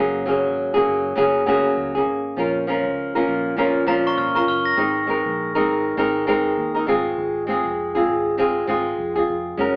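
A dark, fingerpicked flamenco guitar sits up front from the start, with a round, foam-muted vintage electric bass underneath, setting a carefree, sunny acoustic pop groove at 100 BPM in 4/4 with a gentle swing on the sixteenths. The chords move from Gbadd9 to Bbm, Abadd9 and Fm, and between 3.9 and 4.9 seconds a glockenspiel struck with hard plastic mallets adds a brief, bell-like second line high above. The band sounds as if playing live in one room, with light reverb and an AM radio tone, in this short cut from a longer piece.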